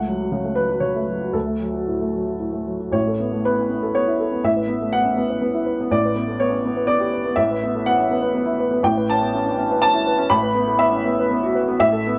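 Neoclassical minimalist piano in A major at 121 BPM in a rubato 3/4, this peaceful, intimate passage cut from a longer piece features a lone upright piano with a woody, up-front tone spanning A1 to B5, moving from F#m/C# and D into a shift at 2.9 seconds toward suspended harmonies such as Aadd9, Gadd9/A and Esus2/A, all set in a moderate small-room reverb.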